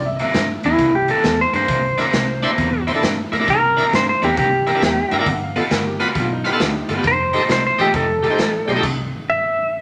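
A moderate studio reverb gives this short cut from a longer electric blues shuffle a lively, roomy sound, and the swung feel comes across as soulful and rollicking. Up front, a clean, twangy lap steel guitar carries the melody with slide and volume swells, its tone compressed and warm. Beneath it, a cranked stack guitar picks a bright riff through overdrive, a dark, round fingered bass holds the low end, and a raw garage kit pumps in a stone room with a punchy kick, a medium-tuned snare and a gritty, saturated sound with a rolled-off top. A full, shouting tonewheel organ with key click, light overdrive and slow rotary speaker joins at 2.0 s, while a brilliant, woody upright piano sounds briefly at the start and returns at 5.1 s. The harmony moves from C9 to G9 and F9 before landing on C as the band stops at 8.8 s; drums and bass trail off just after, and the lap steel rings on to the end.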